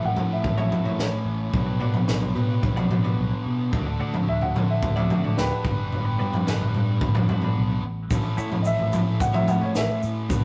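A straight 4/4 pulse at 110 BPM drives this carefree, jangly indie rock passage in A mixolydian, cut from a longer piece. The compact cocktail drum kit sits up front with a punchy kick, a high-tuned snare and toms, sounding natural in a small room, while the fingered electric bass growls in the background beneath it. A fuzz guitar plays a distorted, compressed riff from the start. A clean, twangy twelve-string electric guitar adds a second riff in the background from 0.4 seconds. The woody upright piano carries the melody as a solo throughout, over chords moving from A6 through Gmaj7/B, D and Gmaj7 before returning to A6. A grainy, close and dry tube shaker joins at 8.1 seconds, and the whole take has a rough rehearsal-room feel with light reverb and tube saturation.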